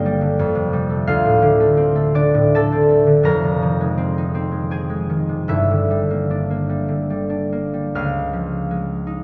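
In a rubato 3/4 that drifts between 66 and 91 BPM, a solo concert harp plays a dreamy, graceful classical passage cut from a longer piece, its fingerpicked, ringing tones spanning F1 to F6 and sitting up front. The harmony moves from Fadd9 through Dm7, Fm7 and Gm6 before turning to Dbadd9 at 7.9 seconds for a short new section. A lush church reverb with a long 3.8-second tail surrounds the warm harp, heard from further back in the room with a soft, dark top end.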